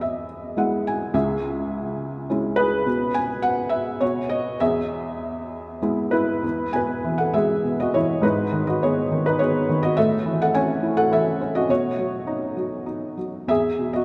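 A felt-muted upright piano plays alone for the whole 14 seconds, its soft, mellow, intimate tone sitting up front with short sustain and a thin felt character. This lyrical classical piece moves in a three-beat rubato and has a relaxed, warm mood, shifting into a second section at 6.4 seconds. A long cathedral-like reverb from a church or concert hall surrounds the close piano sound, and the passage is cut from a longer piece.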